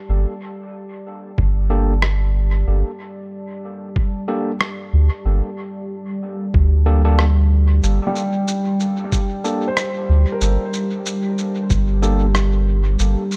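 A swung 4/4 groove at 93 BPM, built on a muffled, thumpy electronic kick up front and a pitched-down rim click and shaker trailing dub echo, sets a meditative, deep ambient dub mood in G minor over a single Gmadd9 chord in this excerpt. A round, soft sub bass sits up front beneath a dark, detuned ambient pad that fades in across the whole passage, while an overdriven, barky tine electric piano adds gritty stabs through echo. From 8.1 s a felt-muted upright piano joins with mellow, intimate arpeggios, its action noise audible in the echo-heavy mix.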